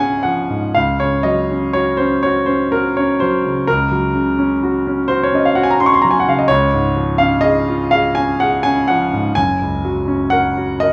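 Tender and nostalgic, this short passage cut from a longer romantic nocturne for solo grand piano moves in a slow, rubato 12/8 at 38-43 BPM, its smooth, vintage tone spanning a deep Gb1 to a high Db6 over chords that settle between Db and Gb, tuned to A4 = 439 Hz and heard from further back in a large studio with a moderate reverb.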